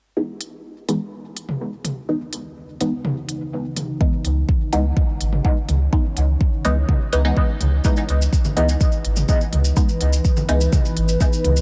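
Lightly reverberant and hazy, this hypnotic dub techno clip opens with a muted, nasal sawtooth chord stab carrying phaser and dub echo over a C#m9 chord, along with smooth electronic hats. Layered electronic toms and congas, re-recorded in a small room, pump with sidechain from 1.5 seconds, and at 2.2 seconds a dark, detuned ambient pad with chorus enters; both stab and pad are shaped by filter sweeps through the first 7.8 seconds. At 4.0 seconds an up-front kick arrives alongside a round, soft sub bass that also pumps. Grainy, mellow acoustic maracas join at 7.8 seconds as the groove settles into its second section.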